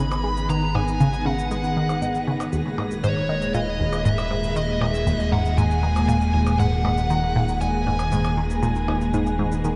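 Hypnotic and cosmic, this short excerpt of sequencer-driven ambient space music at 118 BPM moves from G#madd9 to D#sus4 as a dark, overdriven lead guitar picks a melody through tape echo over a swirling, phased string machine, a juicy, squelchy blip pluck riff, a fat detuned analog bass, a bubbling stepped-filter texture in the background and electronic cabasa and percussion blips, all set in a lush hall reverb with the muted top of cassette tape.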